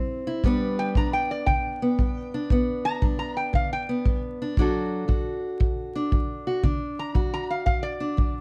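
A fingerpicked acoustic archtop guitar opens this gritty, soulful acoustic country blues excerpt at 116 BPM with a swung 4/4 feel in G major, its bright, boxy accompaniment joined at 0.4 seconds by a dark, punchy kick drum and at 0.8 seconds by a nasal, metallic resonator slide guitar carrying the melody with slapback echo, all set in a dark production with light reverb and vinyl crackle as the harmony moves from G to D.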